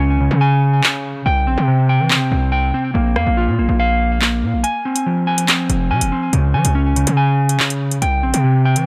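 Drill hip hop with a cold, tense half-time feel, where a dark, clean electric guitar plays filtered, delayed arpeggios over a saturated, heavy 808-style bass with a noise layer, before an electronic drill kit of metallic hi-hats, handclaps and rim clicks enters at 0.8 seconds, all up front in light reverb in this cut from a longer piece.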